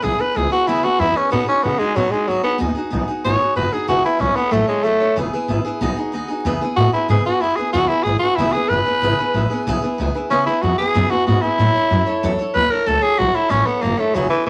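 Crackling vinyl and a small, moderately lively room frame this upbeat, retro rockabilly excerpt, driving along at 187 BPM in E major with a straight feel. A raspy, gritty tenor saxophone leads up front with scooped notes and vibrato, while a bright, full-bodied picked steel-string acoustic guitar supplies the accompaniment and a woody, thumpy pizzicato upright bass holds down the low end. The harmony circles through E6, B6 and A6 across two passes of the same section, the second beginning at 6.5 seconds.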